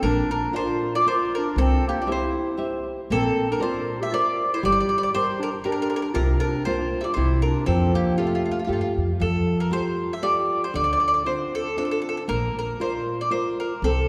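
A woody, up-front mandolin sings the melody over fingerpicked flamenco guitar, dark, thumpy pizzicato upright bass and a distant, mellow classical clarinet second line, which drops out at 8.9 seconds, in this passionate, wistful Italian folk serenade in F major at 118 BPM in a lightly swung 3/4, cut from a longer piece and bathed in the wet reverb of a church or concert hall.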